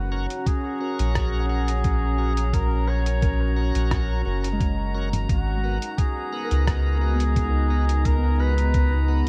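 Hazy and spacious, this short ambient dub excerpt sets a veiled, distant cup-muted trumpet melody over a smooth, detuned analog pad with chorus and a deep, round sub bass sitting up front with tube saturation. A bright, lightly overdriven tonewheel organ adds stabs through a slow rotary speaker and dub echo, while muffled, pitched-down sampler-style drums with hi-hat, rim click and toms enter at 0.3 seconds, joined by a thumpy electronic kick from 0.5 seconds. A fingerpicked Celtic harp enters with ringing tape-echoed arpeggios at 1.4 seconds, a glassy drifting-harmonics texture lingers in the background, and vinyl crackle runs throughout as the chords move from F# to G#m7.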